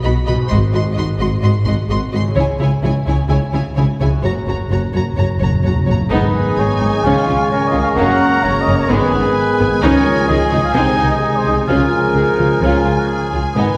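Cinematic orchestral music with a determined, adventurous mood: lush violin sections carry the melody and a second line over focused violas, a bright, ringing harp, woody cellos and distant double basses, soft-mallet timpani add a fill from 4.2 seconds, and at 6.1 seconds a hollow flute, a dark clarinet and a roomy oboe join mellow French horns, very quiet trombones and trumpet stabs, the whole ensemble heard from further back in a reverberant scoring stage.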